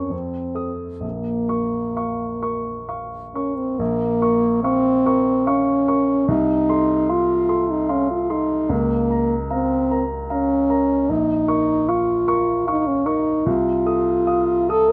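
A French horn with a soft attack and light vibrato sings a melancholic, solemn melody in B-flat minor over a dark, mellow baby grand piano, both sounding from the first moment of this romantic classical fragment. In a slow 3/4 of 63 to 76 BPM with flexible rubato, the piano's long-sustained accompaniment moves between F7 and B-flat minor harmonies, while the horn sits just ahead of it in the balance. The close, detailed sound is nearly dry, keeping both instruments intimate and up front through to 14.9 seconds.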